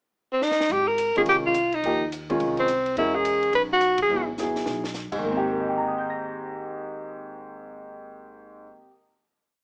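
Searching and spiritual, this brief modal jazz piece swings at 212 BPM in Ab major. A warm, vintage tenor saxophone with vibrato and a soft attack sings motif-based phrases up front from 0.3 to 4.3 seconds. Beneath it play a dry cocktail drum kit with dark cymbals, a high-tuned snare, a punchy kick and a stick-played ride, a woody pizzicato upright bass in a two-feel, and a clear, open upright piano comping in syncopated quartal voicings. A band accent leads to a closing Abmaj9 chord at 5.2 seconds, all heard through light reverb and a small-speaker sound.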